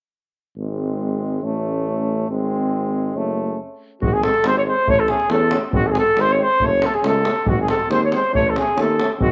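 Restless and bittersweet, this Balkan brass band fragment in 2/4 has a straight feel and is cut from a longer piece. From 0.6 seconds a tuba anchors the bass up front with a soft attack and a vintage tint, while a bright trombone with light vibrato and a clear, soft-edged euphonium sit farther back in the accompaniment. The band breaks off briefly at 3.6 seconds before the second section begins at 4.0 seconds. There a warm, roomy flugelhorn takes the melody up front in a classical style, a very quiet clarinet adds a second line, and a deep acoustic davul joins from a large room. A moderate echo chamber reverb lends the studio ambience a distant cast, and the chords circle through G#, A and F#m.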